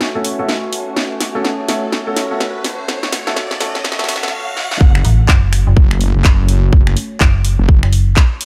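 Bouncy and swaggering, this bass house excerpt in F# minor at 125 BPM with a swung 16th feel builds from a sweeping, resonant pad, a warbly lo-fi pad, low-pass filtered baby grand piano stabs with tape echo, and an up-front garage kit of snaps, claps, hi-hat and cracking snare through a riser and swell. It then drops at 4.8 seconds into a tight electronic kick and a heavy, saturated wobble bass, joined at 5.0 seconds by a dark, metallic FM bass with overdrive, both basses pumping against the kick.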